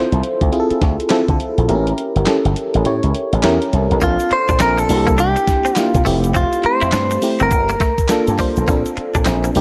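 Light reverb, a digital ambience and lossy compression artefacts frame this confident, punchy new jack swing excerpt with a swung sixteenth-note feel. A warbling, vintage FM electric piano with tremolo and a bright slap bass through an envelope filter sit up front over a thumpy 12-bit drum machine of kick, snare, hi-hat and handclaps, with the kick muted from 1.7 to 4.0 seconds. At 4.0 seconds a twangy clean guitar takes the melody with tape echo, while a scooped second guitar with ensemble chorus plays a riff and a grainy egg shaker sits in the background.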